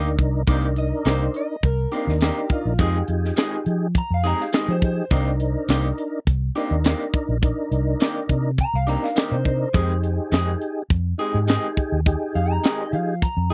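A straight-eighth soul blues groove in 4/4 at 104 BPM rides on a tight, up-front funk kit with a high-tuned snare, tight kick, hi-hat and tambourine, anchored by a dark, round, foam-muted fingered bass. In C minor, moving between Cm7 and Fm7, a smooth tonewheel organ with key click and a slow rotary speaker carries the accompaniment, while a picked, slightly broken-up, lo-fi guitar through a small old amp adds stabs and a compressed, fingered second guitar with subtle chorus enters at 0.8 s. The mood is mournful and soulful, with a clean electric guitar solo running from 0.5 s in a dry, close 1970s-style studio sound, taken from a longer piece.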